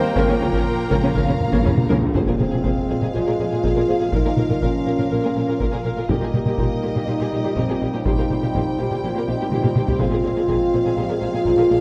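Bathed in the wet reverb of a scoring stage, this dramatic, relentless cinematic orchestral cue at 122 BPM in 4/4 sets lush, vibrato-rich violins on the melody with a softer second violin line, over sustained chords from dark, distant French horns, bright trombones and a shadowy woodwind section, an expressive viola accompaniment with portamento, and rich cellos and woody double basses on the bass, all driven by close, hard-stick taiko drums, while a hollow flute and mellow trumpet stabs sound only in the opening seconds, a dry timpani fill runs to 2.1 seconds, and a huge impact arrives at 2.2 seconds.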